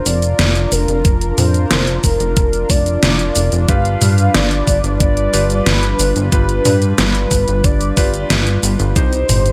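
Driving and nostalgic, this synthwave excerpt at 91 BPM in 4/4 pairs a velvety, detuned sawtooth synth lead with vibrato, chorus and digital delay over a smooth analog pad whose sustained, sub-octave chords pump under sidechain, while a glossy pulse-width-modulated synth bass with filter sweeps sits up front beside a pop drum kit with a deep overdriven snare treated with gated reverb, a knocking electronic kick joining at 1.0 s, and a clangy vintage electric grand piano adding delayed background stabs from 3.7 s as the chords move from Bb/F to G7 and Cm in light digital ambience.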